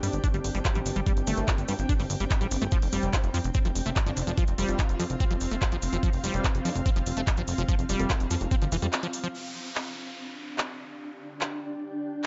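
A knocking, up-front electronic kick drives this alien, psychedelic trance excerpt at 145 BPM, joined by a punchy, wave-folded analog bass, a squelchy acid riff with chorus, tape colour and dub echo, a very quiet formant-sweep wobble bass, a drum and bass kit with bright hats and handclaps, a grainy background cabasa, a swarming detuned drone and a cloudy granular pad, both pumping, before a break at 8.9 seconds gives way to an electronic downlifter from 9.3 seconds.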